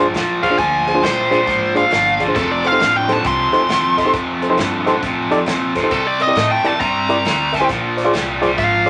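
Electric blues shuffle with a soulful, gritty mood, where a biting, overdriven lead guitar solos from 0.4 seconds over a barky, reedy electric piano overdriven through a combo amp, a bright, picked rhythm guitar riff, a woody, thumpy upright bass and an airy acoustic drum kit with a punchy kick, all moving through Bb9, F9 and C9 chords in a moderate studio reverb dusted with vinyl crackle.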